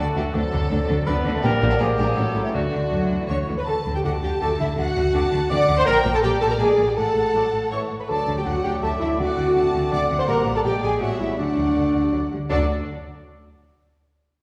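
A bell-like celesta and an expressive violin section open this magical, playful cinematic cue in three, carrying the melody over an airy flute, a mellow cor anglais, a lush second violin section and a distant clarinet on secondary lines, while a dark bassoon and a viola section fill the accompaniment, a vintage French horn section holds sustained chords, and cello and double bass sections anchor the bass, all set back in the wet reverb of a scoring stage.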